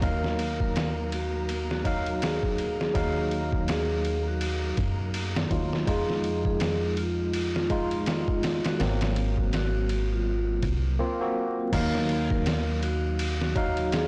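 Brooding, cinematic trip hop at 82 BPM in Eb minor with a swung sixteenth feel, where a dark, ringing vibraphone melody soaked in dub echo floats over a barky tine electric piano with harmonic tremolo and 12-bit sampler grit, a woody pizzicato upright bass thickened by tube saturation, and a compressed, pitched-down sampler drum kit with a thumpy kick up front, while a faint, flickering granular texture hovers in the background until 11.0 seconds, the mix itself blown-out and overdriven with vinyl crackle and light digital ambience in this short excerpt.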